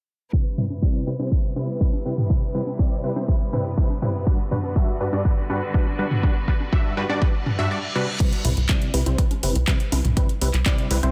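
A straight 4/4 pulse at 122 BPM drives this hopeful, uplifting progressive house excerpt, where a punchy, up-front electronic kick and overdriven congas and toms set in a large room underpin pumping supersaw stabs under a filter sweep and tape echo, a clear, bowed symphonic string section sustains Cmaj7 and Gmaj7 chords until 7.7 s, a reverse cymbal at 7.4 s leads into a house kit with metallic hats, handclaps and crash at 8.2 s, and a tight, sawtooth sequencer bass enters at 8.4 s inside a dense, heavily limited master.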